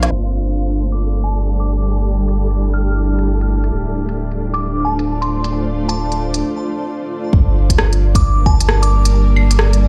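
Nocturnal and ghostly, this future garage fragment, cut from a longer piece, moves with a swung sixteenth-note feel. A blurred, cloudy granular pad holds sustained chords through its own reverb, pumping alongside a round, soft dub sub bass that sits up front with tube saturation. An organic electronic drum kit with a woody snare, smooth hats, rim clicks, claves and crash cymbal sounds tape-warm and re-recorded in a small room. Its parts are low-pass filtered and swept from 0.1 to 7.3 seconds, and a break arrives at 6.4 seconds, when the airy, wind-like noise texture in the background ends. A crystalline, warbling FM bell carries the melody with chorus and digital delay, while a deep, layered electronic kick enters up front at 7.3 seconds as the harmony shifts to Gm. The whole mix has the feel of a big sound system in a bare room, dulled by a low-pass filter.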